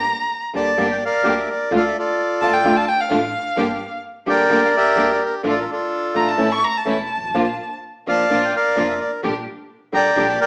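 A reedy, close-miked bandoneon carries the melody up front in this melancholic, passionate tango, entering at 0.6 s with a full, dry tone. A single bowed violin also sits up front as a second line, its expressive playing rich with vibrato and portamento until 7.7 s. A fingerpicked nylon-string guitar adds a small, warm accompaniment, while a lush symphonic string section places focused, smooth-topped stabs in the background and a woody, thumpy pizzicato upright bass anchors the low end. The feel is rubato around 128 BPM in 4/4, moving through Gm, Dm and A before settling on Bb and Gm/Bb. The band plays live in one room with a moderate large studio reverb, the recording has a small speaker sound, and this passage is cut from a longer piece.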